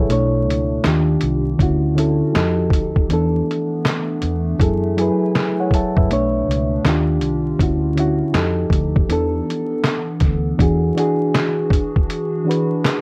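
This lo-fi hip hop piece moves at a relaxed 80 BPM in 4/4 with a swung sixteenth-note feel, its hazy, reflective mood colored by worn, warbling tape, vinyl crackle and a slight pitch drift in a small room. A reedy, mellow electric piano sits up front, carrying jazzy extended chords such as Bm9, Dmaj9 and F9 before settling on E9 in the closing stretch from 10.6 seconds. Behind it, a nostalgic, detuned synth pad with ring-modulated shimmer, slow attack and long release hangs dark and faint in the background, softened by chorus and its own reverb. A round, punchy, foam-muted electric bass adds dark, saturated low end until it drops out at 10.9 seconds. The sampler-style drum kit is compressed, pitched down and muffled, with a thumpy kick, fat snare, hi-hat and handclaps carrying a gritty 12-bit texture in this fragment of a longer track.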